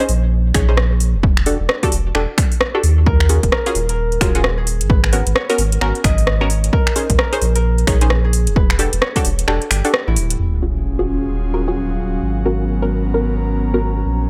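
Bouncy and skippy, this two-step UK garage excerpt in Eb minor moves at 131 BPM with a 61% swing on the 16ths, cycling through lush eleventh chords such as Bbm11, Em11, Ebm11 and Abm11. Punchy, bright sawtooth chord stabs with a vintage warble, coloured by chorus, phaser and delay, ride over a deep, thick saturated sub bass that sits up front throughout. An overdriven electronic kick and a layered house kit of finger snaps, rim clicks and metallic hats give the groove its bite, with the kit placed prominently and both drum parts carrying the sound of a large room. From 3.1 seconds a fingerpicked concert harp adds ringing acoustic lines through digital delay. The kick drops out at 9.5 seconds, and at 10.4 seconds a background sub drop and impact open a new section where a filter sweep moves across the stabs. An airy, breathy pad and a dark, nostalgic, lo-fi tape-like pad then arrive, both pumping against the sidechain and softening the close into a hazy digital ambience.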